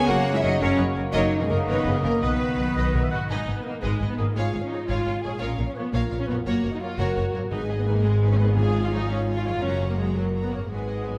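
A lush orchestral sound in moderate scoring-stage reverb carries this heroic adventure-film cue, swashbuckling and determined, at 113 BPM in a straight 6/8 that settles into G# dorian from 3.3 s. Distant, lush violins sing the melody over a second violin line and an airy, hollow flute, with a warm oboe slipping in briefly at 2.7 s. Mellow French horns and very quiet trombones sustain the chords, and distant trumpets add stabs. A clear, focused viola section fills the accompaniment, and a ringing, very quiet thumb-plucked harp traces arpeggios. Cellos and up-front double basses hold the bass, while hard-mallet timpani strike at 7.5 s.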